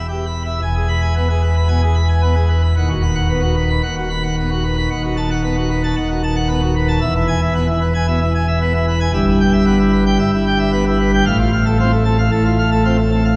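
A full pipe organ plenum, brilliant with mixtures and baroque voicing, carries this dramatic, stormy classical toccata entirely on its own, sitting up front for the whole 13.4 seconds. Its chiff gives each attack a crisp edge, and its range stretches from D#1 in the depths to B5 at the top. The piece moves at 113 BPM in a straight 4/4, centred on E major, with the harmony shifting from an opening E minor into E major at 0.6 seconds, then through B over D# and B7 over D# before returning to E. Later, E minor over G and F over A carry the close of this fragment cut from a longer work. A wet church reverb with a 2.8-second decay surrounds the organ, placing it in the resonant space of a church or concert hall.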